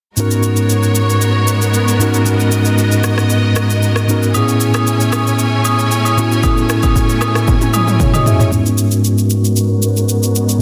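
Amapiano at 115 BPM in G# minor, this soulful, hypnotic excerpt from a longer piece moves in a straight 4/4 feel. A mellow tine electric piano sits up front, clean and heard as if through built-in speakers, its low-pass filtered accompaniment spanning G#2 to E5. Behind it, a lush, bowed studio string section holds intense sustained chords with vibrato, pumping from sidechain compression and softened by a low-pass filter. A layered electronic deep house kit drives the groove with a punchy kick, rim click, shaker and toms, adding a drum fill from 7.5 to 8.5 seconds, while vintage, band-limited agogo bells join in the background from 4.3 to 8.3 seconds. The harmony moves from G#m11 to Amaj7 and back to G#m11 as a filter sweep opens the closing section at 8.5 seconds, all set in light reverb with a dense, heavily limited modern master.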